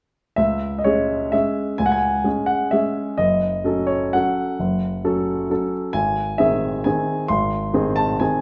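Elegant and nostalgic, this brief excerpt from a longer classical piano waltz moves in 3/4 at around 130 BPM, with uneven beats and a rubato feel in C# minor. A solo grand piano with a smooth, vintage tone sits up front from 0.4 to 8.4 seconds, ranging from F#1 to B#5 and passing through C#m, F#m and G#. The sound carries the moderate reverb of a recital hall.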